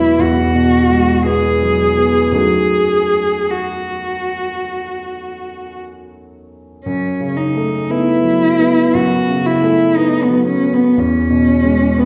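A bowed cello and a concert grand piano begin together in this impressionist classical duo, cut from a longer piece. The mood is hazy and mysterious, with a slow, rubato pulse of 52-60 BPM in 4/4, tuned to A4 = 439 Hz. The harmony sits in F# dorian, moving from Eadd9 through F#m6 and F#m7 before settling on E at 11.0 seconds. A single cellist carries the melody close and up front, with a rich, smooth, even tone and vibrato. The piano accompanies from a deep bass into the middle register, sounding clear and natural with long sustain. A wet recital hall reverb places the pair as if heard from further back in the room, and the opening idea returns at 6.9 seconds.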